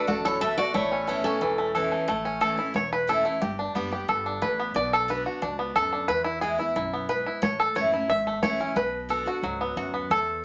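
The recording sits in a wet studio reverb with a short decay and a soft, rounded top end, giving this rustic, driving bluegrass a snug, roomy feel. It opens on a brief ensemble passage where a picked auditorium acoustic guitar carries the tune alongside the banjo, while a lap resonator guitar adds a metallic, nasal second line with slide. Those two parts stop by 1.7 seconds. From 2.1 seconds the five-string banjo takes a solo, twangy and percussive under its fingerpicks and placed up front in the mix. Beneath it, a bright, full-bodied dreadnought guitar plays picked accompaniment through changes on A, G, B minor and E, and a pizzicato upright bass adds a woody, dark, growly, thumpy low end. The passage is cut from a longer performance.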